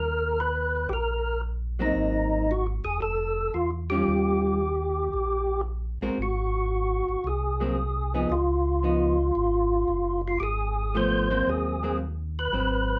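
A percussive tonewheel organ carries the melody up front, its fat, lightly overdriven tone edged with key click, third harmonic percussion and chorus vibrato through a slow rotary speaker. This is a bluesy, soulful soul jazz organ trio in Ab mixolydian, swinging in 4/4 at 114 BPM, taken from a longer piece. A second tonewheel organ holds down the bass from the start, round, dark and clean, also turning through a slow rotary speaker. At 1.8 seconds a vintage hollow-body jazz guitar joins with picked, electric accompaniment in a clean, shadowy tone. The band plays live together in one small, wet room, and the harmony moves through chords such as Ab9, Faug7, Eb9 and Db9 across two passes of the same section, the second beginning at 6.2 seconds.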